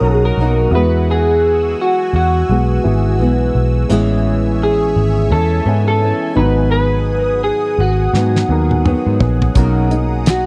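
A lazy swing on the sixteenths gives this dreamy, nostalgic slice of indie and bedroom pop an easy 4/4 sway, cut from a longer piece. Up front, an electric guitar through a small old amp carries the melody with a slightly broken-up, lo-fi bite, coloured by analog chorus and tape echo, while a foam-muted, round picked electric bass anchors the low end. Behind them, a thumb-plucked nylon-string guitar with subtle chorus and a warbly pitch drift fills out the harmony, a woody upright piano sits mellow in the background under a cassette-tape haze, and a lush, detuned unison pad with a slow attack holds bright sustained chords through chorus and phaser. The chords move from Bmaj7 through Eadd9, Amaj7 and G#m7 before returning to Bmaj7 at 9.6 seconds. A damped 70s drum kit enters at 8.1 seconds with a fill, its fat snare and tight kick sounding dry and close in a small room.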